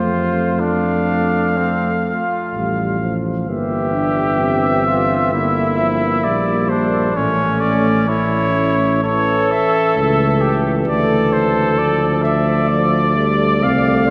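This classical brass quintet excerpt moves at a solemn, grave pace with a rubato feel, its phrases breathing freely over a progression from F through Gm7 and A to Dm. A bright trumpet carries the melody up front with light vibrato, while a second trumpet with a warm, smooth top sings a supporting line just beside it. Further back, a mellow French horn with soft attacks and vibrato fills in the middle harmony. A distant, roomy euphonium adds its own accompaniment beneath the horn. A mellow tuba anchors the bass up front, and the five parts sound together for the full 14.1 seconds in a wet cathedral reverb that lends the ensemble a spacious, reverent glow.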